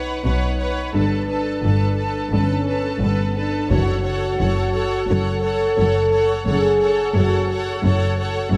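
Lush bowed violins with expressive vibrato carry the high melody over a focused second violin line, intense violas, mellow French horns holding sustained chords, and a smooth cello section alongside soft-attack double basses in a reverberant concert hall, while at 3.7 s distant taiko struck with hard sticks and articulate hard-mallet timpani enter briefly beneath a chord change, giving this cinematic, epic orchestral cue a dark, relentless weight.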